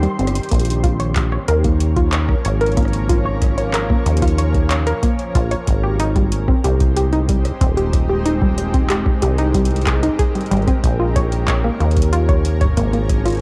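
Intricate and melancholic, this IDM excerpt opens with a brief break and drum fill as a flickering, grainy texture glints in the background over a rubbery, saturated acid bass sitting up front, a warbling, detuned pluck tracing chorused arpeggios through tape echo, a blurred, cloudy granular pad holding sustained chords, and a booming analog drum machine of handclaps, metallic hi-hat and rim click, and at 0.5 s a deep electronic kick enters beneath them, the whole captured as a home recording on cassette with light reverb.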